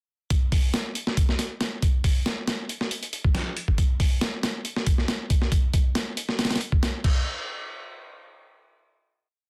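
A dense, heavily limited modern master with light reverb frames this short, funky and swaggering breakbeat piece. A gritty, sampler-style drum kit sits up front in a small room, its looped break of thumpy kick, medium-tuned snare, hi-hat and crash cymbal carrying a slight swing and tape-warm compression, with edits cut into the loop from 0.3 seconds. The drums drop out at 7.1 seconds, and a final hit closes the piece from 7.3 to 9.0 seconds.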